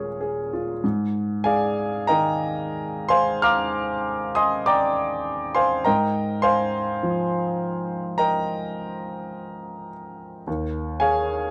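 Hazy and serene, this slow, rubato impressionist solo piano excerpt in Ab lydian drifts at 43-55 BPM in 4/4, its clear, polished grand piano sitting up front with long sustain across a range from Eb2 to F6, moving from Eb9sus4 through Ab69 and Bbsus2/Ab to Eb7sus2 at 10.5 seconds, all wrapped in light reverb and a dark, warm production.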